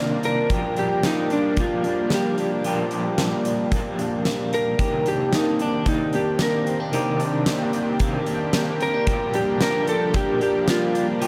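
A straight 4/4 pulse at 112 BPM comes from a huge arena drum kit with a fat snare and punchy kick, up front and joining at 0.2 s, in this ethereal, melancholic dream pop fragment cut from a longer piece. A compressed slide guitar played with fingerpicks carries the melody from 0.3 s, its tone touched by tape echo. Beneath it, a lo-fi guitar through a small old amp picks arpeggios drenched in lush chorus and tape echo, a dark, fingered guitar with tremolo sits in the background, and a thick, warbling, detuned sawtooth pad holds bright sustained chords over Cm9 and Bb6, all inside light reverb and small room ambience.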